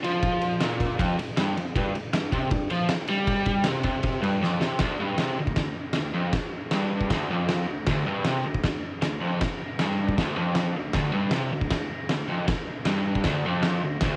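This home cassette recording has a small-room ambience and a light touch of reverb, with the tape's grain colouring both the guitar and the drums. It is a menacing, swaggering garage rock fragment in a straight four-four, cut from a longer piece. An electric guitar, overdriven and double-tracked, sits up front playing a low, warm riff that stays between D2 and G3, its picked tone thickened by overdrive. An oversized, low-tuned acoustic drum kit shares the foreground, with a boomy kick, a fat snare and dark crash and ride cymbals in a bright stone room that pumps around the hits. A drum fill at 4.4 seconds carries the opening passage into the next one at 4.8 seconds, and the guitar and drums then drive on together until the drums stop at 14.1 seconds, just before the guitar ends the fragment at 14.2 seconds.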